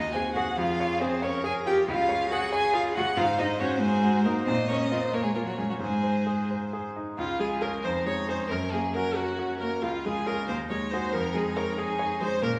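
A cheerful, spirited classical-period piano quartet movement in 6/8 opens with all four players together: a rich, expressive violin carries the melody with vibrato and portamento, a smooth cello sings a second line, and a close, clear viola joins a bright, up-front baby grand piano, whose action noise is audible, in accompaniment, all set in a wet recital-hall reverb as the passage moves into a new section at 7.2 s before the cut ends at 12.6 s.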